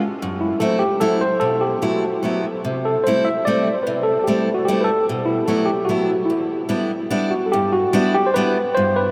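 A nostalgic, bittersweet musette waltz in E minor at 148 BPM with a rubato feel, where a warm, picked steel-string acoustic guitar sits up front accompanying from the start, a barky, clean tine electric piano through a combo amp enters with the melody at 0.4 seconds, the harmony drifts through F#m7b5, B7sus4, C6 and Em7 before turning to G6 at 7.5 seconds, and a huge, wet reverb places this fragment of a longer piece in a vast, echoing space.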